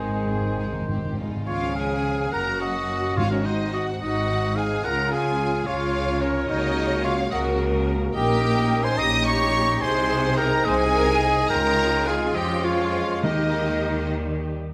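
A lush violin section carries the melody across this cheerful, spirited classical-period movement for symphony orchestra, its rich, focused vibrato sounding from a distance. The music moves quickly in 6/8 at 71 dotted-quarter beats per minute in D-flat major, with uneven beats and rubato. Woodwinds spin supporting lines throughout: a clear, close-miked oboe, a mellow, airy flute with a hollow tone, and a soft-attacked clarinet, joined by a second violin line sitting closer in the background. A mellow bassoon sounds only in the opening 1.2 seconds, while violas give smooth, even accompaniment, a punchy French horn section holds roomy sustained chords, and cellos and double basses anchor the bass. Timpani struck with medium mallets open with a dry fill and return near the close at 13.2 seconds, as the harmony moves through chords such as Ab7, Ebm7/Db and Eb7/Bb before landing on Eb. A moderate recital-hall reverb surrounds the ensemble in this excerpt from a longer piece.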